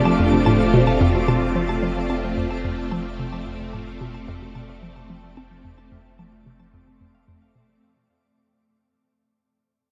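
A swirling, vintage phased string machine holds bright sustained chords up front in this cosmic, expansive piece of ambient, sequencer-driven space music, alongside a hollow, bouncy square-wave pluck riff with chorus and analog delay, clean picked electric guitar arpeggios through delay and shimmer reverb, a twinkling granular texture with octave-up sparkle, and a deep, round sine sub bass, the whole dreamy mix soaked in a huge ambient reverb as the guitar and the overall sound fade out.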